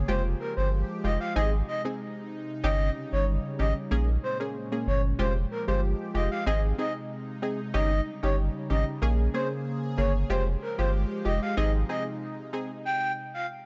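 A breathy, flute-like synth lead with vibrato and tape echo carries the melody up front in this tough, hypnotic dancehall excerpt at 94 BPM in F minor, over a deep, round sub bass that drops out at 11.8 seconds, punchy detuned sawtooth chord stabs, and a lush, thick unison pad cycling through Fmadd9, Ab, Eb7/G and Bbm7, all set in light reverb with a dark, rolled-off top end.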